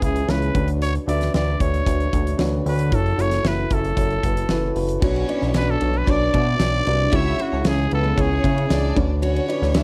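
A dry, close recording with a 1970s studio feel carries this driving, earnest piano-driven pop fragment in B dorian at 114 BPM, where a raspy, growling trumpet sings the melody until 9.0 seconds over a dark, woody upright piano with audible action noise, a thick, detuned analog bass sitting up front, and a huge arena drum kit with a fat snare and punchy kick. At 5.0 seconds a bowed violin section adds an expressive second line with portamento, while a picked steel-string acoustic guitar with fresh strings and finger squeak plays a riff in the background.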